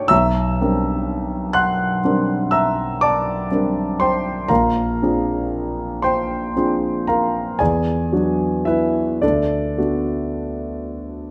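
A grand piano opens on a C9/B chord and drifts through Bb9, E9 and D6 harmonies in this luminous, dreamy excerpt of impressionist solo piano, moving in a rubato 9/8 at 35-42 BPM in dotted quarters, its intimate, up-front tone reaching down into deep bass with the action noise audible, all set in a moderate recital-hall reverb.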